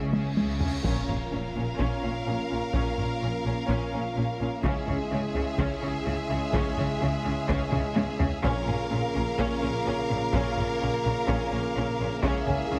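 Compressed, saturated taiko drums struck with heavy sticks drive this heroic, dark orchestral film-score excerpt, opening with a fill at 0.1 s under a huge cymbal swell that lands as an impact at 0.8 s, and returning with another fill near 7.7 s. Lush bowed strings carry the harmony: a warm, expressive violin melody with a smooth top sits over a clear, focused second violin line, while a viola section glides with portamento in the background and even, rich cellos and double basses anchor the bass. A classical-style French horn section holds sustained chords from the start, joined at 0.8 s by a tight trombone section, and the whole mix sits in recital hall reverb with a heavily squashed, radio-style sound.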